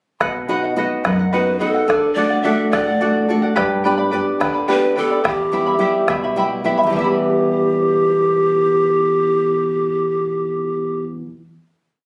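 Melancholic yet festive, this short Andean folk piece in E minor moves at 72 BPM in a straight 6/8, with breathy large cane pan pipes carrying a tongued, chiffy, vibrato-laden motif melody up front from 1.3 seconds over shimmering fingerpicked charango strumming open chord shapes, a full-bodied nylon-string guitar playing oompah bass notes and chord figures, and a deep, dry bombo that stops at 7.2 seconds, all heard through a phone recording in a club room with light reverb as the chords move from B through D and G to E minor before a final chord rings out.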